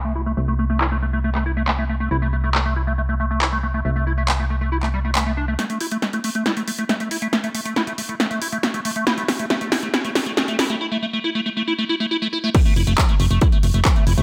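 A squelchy, resonant acid bass arpeggio with phaser, chorus and tape echo opens this soaring, emotional uplifting trance excerpt over a round, mellow FM bass, both pumping to the sidechain through a filter sweep, before an overdriven techno kit with a punchy snare, handclaps, hi-hat and crash enters at 0.8 s and builds from 5.6 s into a drop at 12.5 s, where a heavy electronic kick joins.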